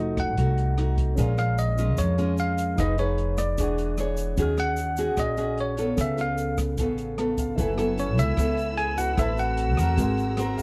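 A bell-like tine electric piano carries the melody, bright, clean and up front, over a wistful, smooth bossa nova groove in straight 4/4. Beside it, a fingerpicked nylon-string guitar with fresh strings and a clear baby grand piano, set back with long sustain, supply the harmony, while a woody pizzicato upright bass sits forward in the mix. An open jazz drum kit, dark with a boomy kick and a rolled-off top, plays hi-hat, kick drum and rim click, and a grainy tube shaker joins softly in the background from 1.2 s. At 7.6 s the music moves into a new section, where a lush, bowed string section enters with sustained chords played sul tasto, and an airy silver flute with vibrato follows at 8.0 s as a second line. The grand piano adds brief fills, and the dry, close recording has a 1970s studio character; this fragment is cut from a longer piece.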